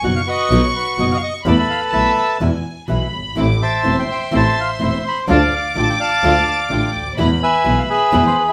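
Heard live in one room under a wet studio reverb, this melancholic, tense tango fragment moves at 126 BPM in a rubato 4/4, with a reedy, vintage bandoneon leading up front. Beneath it, a sul tasto violin section with soft attack carries a high second line, a fingerpicked nylon-string guitar gives full-bodied classical accompaniment, and a close, biting, bowed double bass holds the bass. From 3.4 s, a gut-string, period-style string section adds stabs in the background as the harmony moves from B through Esus4 and E to Am, Dm and back to E.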